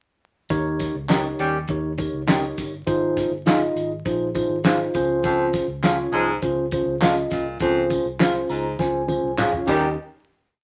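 A straight 4/4 backbeat soul groove drives this danceable, warm 1960s-style soul piece: a cloth-damped, thuddy drum kit with a fat snare and dark cymbals, tambourine and handclaps on the backbeat, a round, foam-muted fingered bass with a syncopated line, up-front mellow tine electric piano chords with short fills, and twangy, slightly broken-up guitar chops, joined by a smooth-topped horn section in short stabs from 1.4 seconds and a breathy baritone saxophone with low punctuation from 5.2 seconds, over vinyl crackle and moderate studio reverb, before a final hit at 10.0 seconds.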